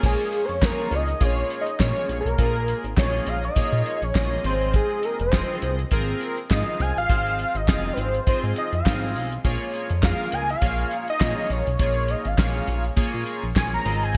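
Funky and slick, this short cut of early-eighties boogie funk rides a loose sixteenth-note swing in 4/4, moving from Bbm7 to Ab6 at 4.4 seconds and back to Bbm7 at 9.4 seconds. A fat, detuned analog lead with a sawtooth edge, a sub octave and ring modulation carries a solo throughout, its chorus and vibrato giving the sustained tones a dark, rounded shimmer. Beneath it, a chorused polysynth fills out the harmony with glossy pulse-width chords and filter sweeps, while a chorused synth bass sits up front with a dark, evolving pulse-and-sawtooth tone shaped by a moving notch. The damped 70s drum kit is dry and acoustic, with a fat snare, tight kick, handclaps, hi-hat and crash under a rolled-off top and gated reverb, and a jingly tambourine rattles in the background until 14.0 seconds. A moderate plate reverb and bright digital production give the whole recording its retro sheen.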